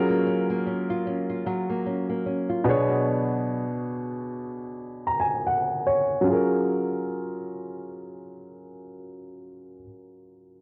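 Romantic and smooth, this slow R&B excerpt at 75 BPM in F# major, with a gentle sixteenth-note swing, sets an up-front baby grand piano with a natural, short-sustained tone, accompanying through 10.6 seconds and adding a fill, beside a dark, fingerpicked flamenco guitar whose echoing arpeggios stop at 3.7 seconds, both softened by a low-pass filter and cassette tape grit in a dry home recording, as a filter sweep runs through the opening 6.3 seconds and the chords move from F#maj7 to Bm6 and back.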